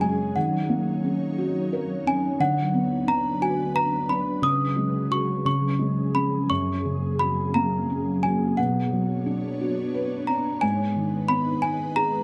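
A small celesta carries the melody up front with a bell-like, delicate tone, its hard felt hammers giving the high notes a bright, sweet edge. This gentle, sleepy lullaby moves at 59 BPM in a rubato 6/8, tuned slightly high to A4 = 441 Hz. Beneath it, a felt-muted upright piano plays the accompaniment, close and intimate, with a dark, thick-felt sound and audible action noise that keeps it natural. An ethereal, airy pad holds sustained chords lower in the mix, its detuned unison layers, slow attack and long release softened by ensemble chorus and its own built-in reverb. The harmony drifts through D#m7, Bm/D and a C#sus4 resolving to C#, then settles on F#add9, Bmadd9 and G#m. The recording is captured with close, detailed microphones and light reverb, and this 12.2-second passage is cut from a longer piece.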